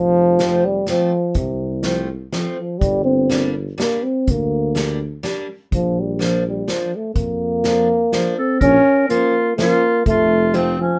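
Jolly and bouncy, this alpine folk dance-band excerpt in 3/4 at 124 BPM features an up-front, mellow euphonium carrying the melody over a smooth-topped tuba bass, a full-bodied picked steel-string acoustic guitar with audible finger squeak, and an unplugged drum kit with a punchy kick and bundle-stick hi-hat and snare, while a clear, distant clarinet joins with a second line at 8.4 seconds, just before the harmony turns from Bb to Bbm, all within light reverb.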